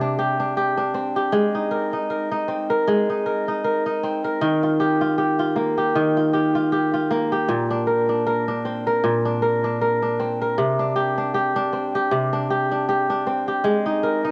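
Intimate and delicate, this folktronica fragment from a longer piece features a solo kora, fingerpicked with a crisp, ringing tone that sits up front and carries a cassette tape coloring. The lightly swung playing moves through suspended and added-ninth chords, from Csus2 through Abadd9, Ebadd9 and Bbadd9 and back again. A moderate spring reverb and small room ambience surround the homemade cassette recording.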